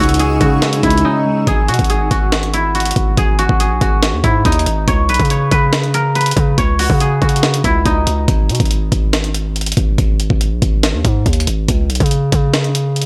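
Brooding and menacing, this half-time trap excerpt at 141 BPM in G# minor sets a silvery, fingerpicked guzheng melody with tape echo over a gritty, overdriven sampler-style breakbeat kit with a thumpy kick and high-tuned snare, plus a heavy, distorted 808-style bass; a mellow tine electric piano plays only until 1.5 seconds and a cloudy granular pad sits in the background until 1.4 seconds, the drums drop out briefly at 1.0 seconds, and the guzheng stops at 10.6 seconds during the closing break.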